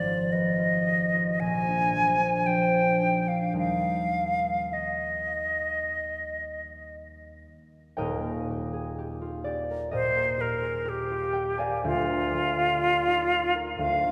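Classical romantic duo in Eb major, elegiac and yearning, moving at a slow, rubato 52-64 BPM in 4/4 in this excerpt cut from a longer piece. An airy, silver concert flute carries the melody up front with expressive vibrato and tongued notes, while a mellow, thumb-plucked concert harp rings alongside it as accompaniment, also up front, both playing throughout. Heard in a church-like space with a long, wet reverb, the harmony drifts from Fm7b5/Ab through Bb9 to Eb, and a second section begins at 8.0 s before settling on Bb7/D at 11.9 s.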